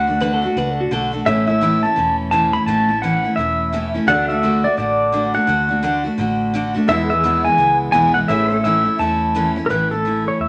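Heartfelt and nostalgic, this short country excerpt moves at 171 BPM in 4/4 with a swung eighth-note feel in A major. A bright, compressed pedal steel guitar carries the melody up front, its fingerpicked slide lines colored by volume swells, while a jumbo steel-string acoustic guitar, picked and full-bodied, drives the accompaniment just as prominently. Underneath, a foam-muted vintage electric bass gives a round, punchy low end, and a mellow baby grand piano sits smoothly in the background. A twangy clean electric guitar adds a brief second line between 0.2 and 1.2 seconds, and from 4.1 seconds a second pedal steel, set back in the mix, lays sustained chords behind the lead. The harmony moves from D to A, then back through D and E before resolving to A, all within a studio reverb that adds a short, wet sheen.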